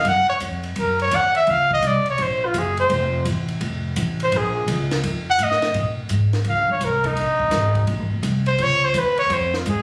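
A phone recording made in the room, with light club reverb and compression, catches a short cut from a longer small-group swing and bop piece in Bb minor at 169 BPM, smoky and cool in mood. A warm trumpet with vibrato and a smooth top solos up front throughout, over a woody, thumpy pizzicato upright bass on gut strings and a dry compact cocktail kit with dark cymbals, a high-tuned snare and a punchy kick. The chords move from Gbmaj7 through F and Bbm7 to F7, settling on Bbm9 at 5.7 seconds.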